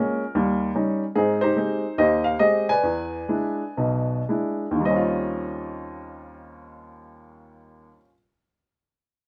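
A woody, polished upright piano plays alone and sits up front in this short fragment of solo jazz, sounding from 0.0 to 8.1 seconds. The mood is warm and playful, carried by a swung eighth-note feel in 4/4 and a range that stretches from B1 up to Ab5. The harmony opens on Eb7, moves through Abmaj7 and E7, and lands on a rich Eb13. Between 1.2 and 4.8 seconds the pulse slows down, giving the phrase a relaxed, stretched-out lilt. A light reverb frames the present, close piano tone.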